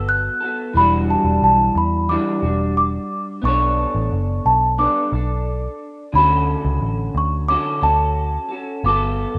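A rough home-demo sound bathed in lush hall reverb frames this laid-back, sunny indie and bedroom pop excerpt at 89 BPM in D major, where a delicate, bell-like celesta carries the melody with subtle chorus and slapback echo, a bright, twangy, slightly broken-up electric guitar through a small old amp adds picked accompaniment with chorus and vibrato, and a round, punchy, foam-muted vintage electric bass sits up front beneath a progression of Gmaj9, Em9, Bm9 and Dmaj7.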